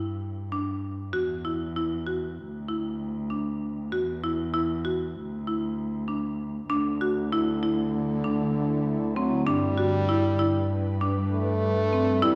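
This is contemporary instrumental chamber music in 9/8 at 195 BPM counted in eighths, set in D major with a shimmering, restless mood, and it is cut from a longer piece. A woody marimba, struck with medium hard mallets, plays arpeggios up front from the start, while a muted cello, a single bowed player con sordino with a veiled tone and vibrato, carries the bass beneath it. At 6.7 seconds a clear French horn enters as a solo second line in classical style with light vibrato, and at 7.8 seconds an ethereal, airy pad adds sustained chords with a slow attack, ensemble chorus and its own reverb. The harmony drifts through suspended and added-ninth colors on E and D before settling on G. A moderate scoring stage reverb surrounds the ensemble, and the production leans dark and warm.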